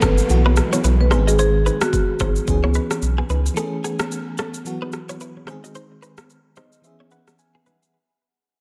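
A thick, saturated sub bass sits up front in this sultry, smooth afrobeats excerpt, playing until 3.5 s over a swung groove from an electronic drum kit with a knocking kick, rim click and shaker, roughened by 12-bit sampler grit and backed by high-tuned, ringing congas in the background. A close-miked, dry marimba carries a short melody until 2.3 s with tape echo, while a clean, direct-recorded electric guitar picks a compressed riff through chorus and echo, and a mellow FM electric piano with tremolo supplies the chords, moving through Bsus4, G#, C#m7 and Amaj7. A downlifter drifts in the background, the electric piano adds a fill from 6.3 s, and light reverb binds the whole passage as it fades out.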